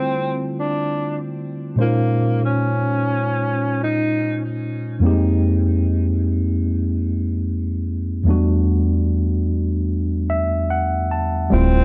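A breathy tenor saxophone leads this reflective, melancholic lo-fi hip hop excerpt from its first moment at 74 BPM with a lazy 16th-note swing, its mellow subtone, vibrato and scooped notes sounding whispered and intimate through a low-pass filter and tape echo, until it drops out at 4.4 seconds. A worn, slightly out-of-tune tine electric piano carries the cassette-tinted accompaniment throughout over Dm11, Bbm11, Fm11 and Em11 chords, adding a fill from 9.9 seconds. The saxophone returns briefly at 11.5 seconds alongside a deep, full sine sub bass, all set in a moderate studio reverb.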